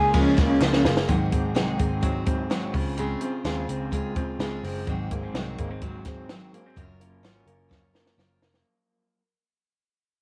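Breezy and bright, this jangly indie pop piece moves at 127 BPM in a straight 4/4 in Db major, cut from a longer piece and fading out from 1.1 seconds onward. An electric guitar through a small old amp carries a brief, dark, slightly broken-up melody with tremolo and slapback echo that lasts only until 0.8 seconds, while a second small-amp electric guitar, picked and lo-fi, spins arpeggios under the same tremolo and slapback echo. A picked steel-string acoustic guitar with an auditorium character fills in the accompaniment, and a vintage foam-muted electric bass adds a round, amped low end. The compact cocktail drum kit sits up front, dry and natural, with a punchy kick, a high-tuned snare, dark cymbals and fills at 0.6 and 7.7 seconds, while a hollow, very quiet group handclap appears only briefly near the start. Light studio reverb and a layer of vinyl crackle give the sound a lo-fi, vintage sheen as the chords move from Db6 through Ab7 and Dbmaj7 to Gbmaj7.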